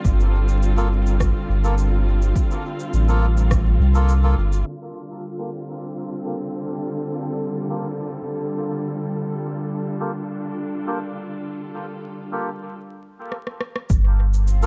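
Ambient dub with a deep, spacious mood, set in a dark room ambience laced with vinyl crackle, where a lush, woody string section sustains bowed chords with vibrato throughout while a reedy, breathy melodica plays stabs drenched in dub echo from 0.8 seconds. A round sine sub bass and a punchy, overdriven electronic kick open the piece alongside an overdriven electronic cabasa and rim click, then drop away until a drum fill at 13.3 seconds brings the beat back. In between, a filter sweep shapes the drums, and the harmony moves through Gm9, G7sus2 and G7(no3).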